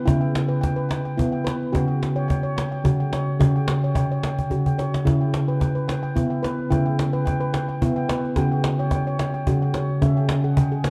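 A dark production steeped in echo-chamber reverb carries this meditative, hypnotic world excerpt at 109 BPM in a lightly swung 3/4, where a bright, ringing, close-miked handpan spins arpeggios over chords moving between E5/C# and F#5/C# before settling on C#m, while a woody, compressed cajon with faint snares and soft hands sits up front and adds a drum fill at 4.4 seconds.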